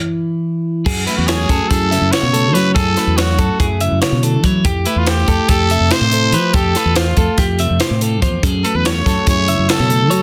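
A straight 9/8 pulse at 285 BPM, counted in eighths, drives this bright, playful math rock and midwest emo excerpt: a twangy twelve-string electric guitar plays alone over the opening stop until 0.9 s, when a round fingered electric bass, an up-front crisp fusion drum kit with high-tuned snare and tight kick, and warm picked arpeggios from a clean electric guitar join; at 1.1 s a raspy, growling trumpet takes the punchy solo melody with light vibrato as the harmony moves from F#m9 to Fmaj9 and back, all set in light reverb within a dense, heavily limited modern master.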